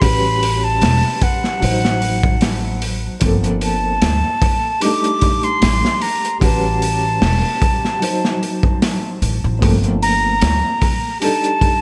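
A breathy concert flute carries the melody up front, its straight tone and soft attack captured close, roughened by vintage 12-bit sampler grit and trailed by dub echo. Beneath it, a felt-muted upright piano supplies mellow, intimate accompaniment with audible action noise, shimmering through tremolo and tape echo. A crunchy breakbeat kit recorded in a studio room sits forward with a punchy kick, a medium-tuned snare and hi-hat; its saturated, rolled-off sound is treated with gated reverb and the same sampler processing as the flute. A woody pizzicato upright bass on steel strings holds the low end until it drops out at 10.6 seconds. This smoky, dark trip hop fragment, cut from a longer piece, swings gently in 4/4 over chords such as A13, Adim7, Gm11 and Cm13, framed by light studio reverb and a bright 1980s-style digital production.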